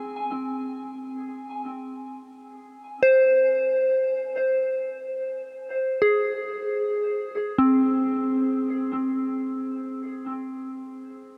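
Free of any steady pulse, this ambient piece drifts in open, unmetered time, carrying a serene and warm mood. A lone soft synth bell carries the whole piece from 0.0 to 11.4 seconds, moving between C4 and Ab5 with a pure, vintage FM tone that sits up front in the mix. Each note strikes quickly and then decays into a long release, while chorus gives the bell a gentle warble. A diffuse ambient delay and a huge, wet reverb with a 7.8-second tail surround it, so the notes melt into a glowing haze. A brief opening passage gives way at 2.7 seconds to a longer second passage, which is cut off as part of a longer piece.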